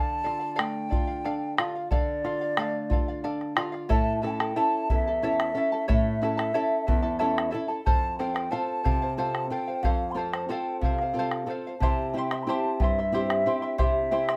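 Andean folk for a small ensemble, earthy and melancholic, moving in 6/8 with a straight feel, cut from a longer piece. A wooden flute carries the melody, its tone pure and hollow with vibrato and tongued notes, sitting at a distance in the space. Beneath it a fingerpicked charango shimmers on its doubled strings, some of them tuned in octaves, while a nylon-string guitar, small in body and placed up front, fingerpicks the lower accompaniment. The bombo enters at 0.3 seconds with a deep, dark, close and dry thump that stands forward. The harmony moves from D minor through A, F and C, and the whole ensemble sits in a wet small-room ambience.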